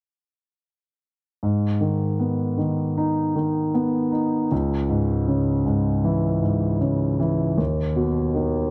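A concert grand piano carries this short pop fragment alone, playing from 1.4 to 8.7 seconds in a low-to-middle register that reaches down into deep bass. The mood is emotional and melancholic, with a straight, steady feel in four. The harmony moves from G#m to C#m and settles on B/D# near the end, a brief passage cut from a longer piece. The piano sits up front with an intimate, natural tone and long sustain, and the audible action noise of the instrument adds to the closeness. The dry, close recording has the character of a 1970s studio, with a small room ambience around the instrument.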